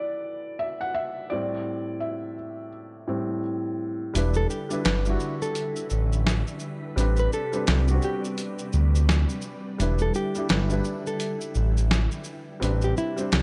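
Swung sixteenths at 85 BPM set up this nostalgic, melancholic lo-fi hip hop excerpt in E minor, where a soft, felt-muted upright piano with audible action noise plays alone over Em7 and Am7 until 4.1 seconds, after which a dark, gliding synth bass with vibrato and portamento, a gritty, compressed sampler-style drum kit of hi-hat, shaker and snare, a warbling vintage organ-string ensemble with chorus, and, from 4.4 seconds, a small fingerpicked nylon-string guitar melody through tape echo settle over Em7 and Am11 beneath light digital reverb.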